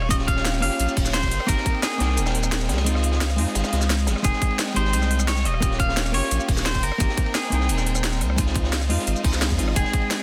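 A deep, saturated sine sub bass sits up front through this rolling, soulful liquid drum and bass fragment at 174 BPM in a straight 4/4, holding until 9.8 seconds. A tight, layered electronic kick hits alongside it, dropping out between 2.9 and 4.2 seconds before returning. Two kits drive the groove: a produced electronic one with a cracking snare, crisp hats, rim click and shaker, and a smooth acoustic breakbeat kit with dark cymbals, a high-tuned snare and a rolled-off top, its ride, hats and snare high-pass filtered. A bright, clean electric guitar carries the melody through delay, while a compressed hollow-body jazz guitar accompanies through dub echo and a lush bowed string section holds sustained chords in the background with sidechain pumping. The harmony cycles through Eb9, Abmaj9, Dbmaj9 and a rootless Fm9, tuned to A4 = 436 Hz, set in light reverb and small room ambience with a dense, heavily limited master.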